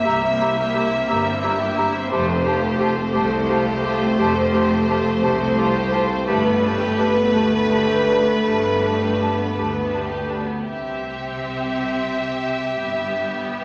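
A rich, vibrato-laden violin section carries the tender, moving melody up front in this slow, rubato cinematic excerpt in C major, moving at 54-59 BPM in 6/8, while a second violin line, lush violas and cellos, and focused double basses sit behind it; a bright clarinet, a very quiet, dark cor anglais, an airy, hollow flute group and a mellow French horn section add supporting lines and sustained chords until they all drop away by 10.5 s, leaving the strings to continue alone in the reverberant concert-hall space.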